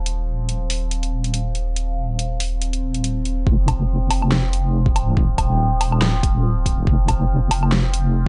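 Swung half-time sixteenths drive this dark, heavy deep dubstep cut, where a detuned square-and-sine wobble bass sits up front with chorus and tube saturation, a resonant, wave-folded sawtooth drone with chorus, phaser and reverb sustains a Cmadd11/Eb chord, an electronic kit of huge snare, bright hats and woodblock plays throughout, and a layered deep kick joins at the drop at 3.5 s before stopping at 7.2 s, in a dry, gritty hardware recording.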